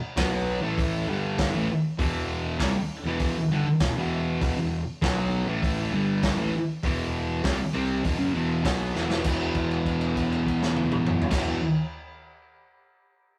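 A thick, double-tracked fuzz guitar riff leads this raw, menacing garage rock piece at 99 BPM in E minor, backed by a gritty, saturated breakbeat drum kit with dark cymbals and a growly, punchy picked bass set in the background, all heard in a rough stone rehearsal room until a drum fill at 9.0 s gives way to a held note over E5 from 9.3 s.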